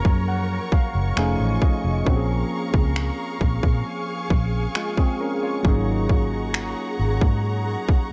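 A trap drum kit sits up front in this dreamy, romantic contemporary R&B excerpt, its finger snaps and hard-clipped kick carrying a tape-warm, produced edge. Soft electric-piano-like synth keys with chorus play a mellow, detuned accompaniment, opening with a fill over the first 2.1 seconds. A lush bowed string section holds smooth, vibrato-rich chords above, while a dark, foam-muted fingered electric bass adds a round, punchy low end. The harmony moves from Gbmaj7 through F7alt to Bbm7, then settles on Ab9sus4 at 5.6 seconds. The dry, dusky mix keeps this brief fragment intimate.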